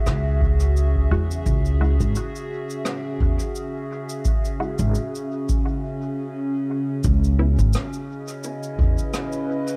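A dark, small-room sound wraps this hazy, deep ambient dub fragment, where a warbling, lo-fi pad with chorus, reverb and phaser holds sustained chords over a woody, growly upright bass up front, an analog electronic kick, brushed cabasa and rim click trailing dub echo, and a muted, resonant filtered chord stab with phaser and dub echo from 1.1 to 7.5 seconds, with a break at 5.6 seconds before the harmony moves from Eadd9 to C#m7 at 7.0 seconds.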